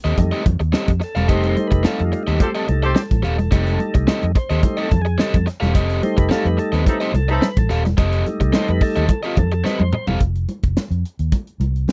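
An overdriven, picked electric guitar and a dark, round, foam-muted fingered bass open this strutting, energetic funk cut at 108 BPM in F mixolydian, joined at once by an up-front drum kit with a high-tuned snare and tight kick, and by bright, damped congas in the background. A clean tonewheel organ with key click and slow rotary speaker takes the solo over an F9 chord, while a vintage horn section with light vibrato and octave doubling punches in briefly at 2.4 and 6.9 seconds. A drum fill at 9.7 seconds leads to a move onto F5 for the closing bars, all in a dry, close 1970s-style studio sound.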